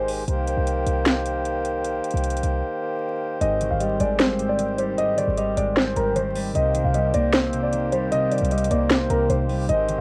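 Up-front trap drums with a sharp snare and metallic hi-hats drive this menacing, dark trap cut in a half-time feel, over a punchy, tight 808-style bass with a sine tone and noise layer, and a reedy, breathing pedal harmonium holding sustained chords. After a break at 2.6 seconds, a deep, vintage concert grand piano takes the melody from 3.4 seconds, low-pass filtered and coloured by analog delay and cassette tape. It is joined by a clean, fingered, compressed electric guitar with phaser as the harmony moves between Cm7 and Abmaj7, all in a dry home-cassette sound with vinyl crackle, taken from a longer piece.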